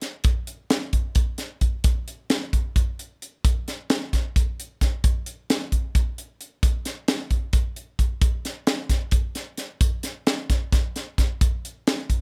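A crisp, acoustic fusion drum kit sits up front for the whole 12.2-second clip, its high-tuned snare, punchy kick and hi-hat carrying a straight, funky groove in 7/8. The jazz-leaning playing has a nocturnal mood, and the studio-room sound is airy and polished, with little reverb. This short passage is cut from a longer piece.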